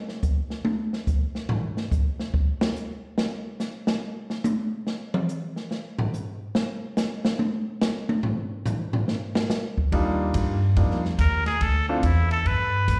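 A swinging 142 BPM groove opens this playful, sophisticated small-group jazz excerpt with a dark-cymballed, boomy-kicked drum solo until 9.9 s, when woody pizzicato upright bass and an intimate concert grand with audible action noise and slapback echo arrive on Ebmaj9 in Eb major, before a nasal, straight-muted trumpet with vibrato and scooped notes takes the melody at 11.2 s over Dm9 and G, all heard through a live venue's PA with recital-hall reverb.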